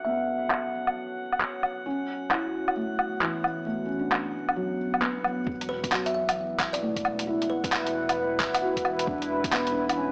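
A swung 133 BPM future garage groove in 4/4 carries this rainy, wistful excerpt, where a muffled, pitched-down sampler kit of handclaps, hi-hat and woodblock sits up front over a felt-muted upright piano with audible action noise, a deep, moody ambient pad under a filter sweep until 5.5 seconds, and a glassy drifting harmonics texture. A thumpy electronic kick and a rumbling detuned saw bass in the background arrive at 5.5 seconds, and a woody kalimba with tape echo, heard briefly at the very start, returns at 5.7 seconds. It is all framed by a gritty, small-speaker sound with vinyl crackle as the chords move from F#m7 to Bm9.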